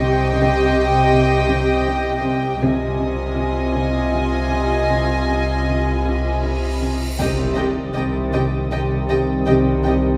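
A tense, ominous cinematic suspense cue in C minor, moving at 79 BPM in a straight 3/4, cut from a longer piece and heard from further back in a reverberant scoring stage. Bowed sul tasto strings carry the opening: violins hold a floating melody between G5 and Ab5 over a second violin line on Eb5, an intimate viola section with vibrato fills in the accompaniment, and cellos play a riff on C3 while a second cello section and rich double basses anchor the bass. Underneath, a deep rumbling drone on C2 with its own built-in reverb sits in the background, and a high studio violin texture reaching up to A6 adds a smooth top. The harmony shifts from Cm to Fm7/C and back to Cm at 7.2 seconds, where a huge, bright cymbal swell that begins at 6.3 seconds lands as an impact. At that moment mellow French horns and dark, distant trombones with light vibrato enter with sustained chords, deepening the brass weight until the passage ends.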